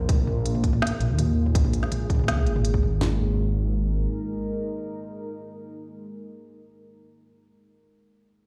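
Heard through a large studio reverb, as if played on a big system in a bare room, this tense, dark half-time drum and bass fragment at 164 BPM rests on a deep, warbling, vintage pad with chorus and sidechain pumping that sustains chords moving from A#5 to G#5 at 3.0 seconds, over a rumbling, detuned saw bass that stops at 4.1 seconds, while a trap kit with a hard-clipped kick and sharp snare sits up front beside an organic electronic kit of woody snare and smooth hats, both kits falling away by 3.1 seconds.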